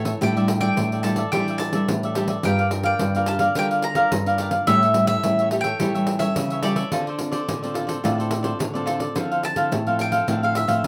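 A crisp, up-front cavaquinho and two fingerpicked nylon-string guitars, one holding the bass with a full-bodied tone, open this nostalgic, bittersweet samba-choro excerpt in D minor at 107 BPM, joined almost at once by a jingly, compressed, saturated pandeiro and a round, double-strung mandolin carrying the melody over A7sus4, Gm7, A7 and Dm7 before a new section arrives on Dm9 at 9.2 seconds, all in a rough home-demo mix with moderate studio reverb.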